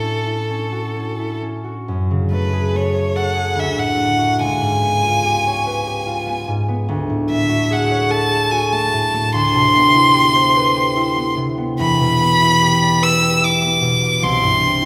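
A generous, wet recital-hall reverb with a 1.7-second decay surrounds this 14.9-second portion of a longer piece, recorded in a church or concert hall. It is a dreamy, pastoral impressionist duo for violin and harp in 3/4, moving with a rubato feel around 73 BPM. The solo violin carries the melody from A4 up to E6, its tone clear, smooth and even, with vibrato and a close, bowed presence placed up front. The concert harp supplies the accompaniment across a range from C2 to D5, its fingerpicked strings acoustic, warm and ringing, also up front and sitting slightly beneath the violin. After an opening on A6, the harmony shifts at 1.9 seconds to F#madd9 and drifts through colorful chords such as Dmaj7#11, C#7#11 and Cmaj7/D before settling on Em7 and Cadd9 near the close.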